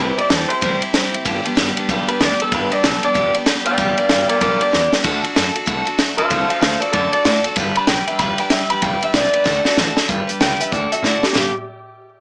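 A twangy, slightly broken-up electric guitar through a small old amp carries the melody up front, its bright tone bathed in spring reverb and analog delay, in this upbeat, retro rockabilly excerpt with a swung feel. Beneath it, a full-bodied jumbo acoustic guitar is picked for accompaniment while a woody, thumpy upright bass on gut strings holds down the low end, and a compact cocktail kit with a punchy kick, high-tuned snare and dark cymbals enters at 0.2 seconds. Drum fills mark 4.7 and 9.5 seconds, and the whole clip has a light reverb and a small-speaker sound.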